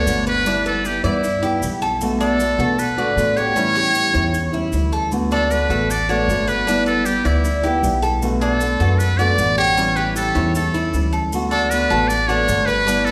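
A muted trumpet takes the solo up front, its buzzy, thin tone carrying a light jazz-style vibrato over a relaxed, sunny Cuban son and guajira groove. Beneath it, a fingerpicked nylon-string guitar adds dark classical colour with an audible finger squeak, a Cuban tres spins metallic double-string arpeggios, and a woody, growly pizzicato upright bass anchors a repeating G6, Bm7, A7, D6 cycle. Grainy maracas sit mellow in the background, and the whole cut from a longer piece is bathed in a wet recital hall reverb.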